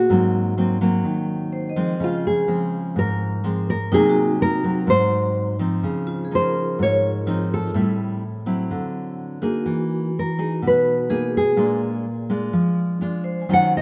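A moderate plate reverb gives this romantic, sunny bossa nova fragment a glowing sense of space, with two fingerpicked nylon-string guitars placed up front at a straight 125 BPM in 4/4. One guitar, dark and deep in classical tone, carries the melody and takes a solo from 5.8 seconds, while the other, full-bodied with audible finger squeak, supplies the accompaniment. Set lower in the mix, a bright vibraphone struck with medium hard mallets rings with a fast motor vibrato over lush harmony moving from Ab9 and Dbmaj7 toward Emaj9#11 and Bb7.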